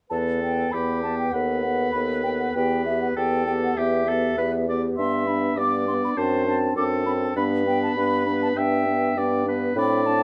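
In a straight 4/4 at 100 BPM, this quick, restless and urgent classical-period wind quintet excerpt in E minor sets a pure, soft-attacked flute melody above a punchy oboe second line with light vibrato, a distant, roomy French horn and a mellow clarinet tucked in the background as accompaniment, and an up-front bassoon bass, while the harmony moves from Em toward G under light reverb and a dark production.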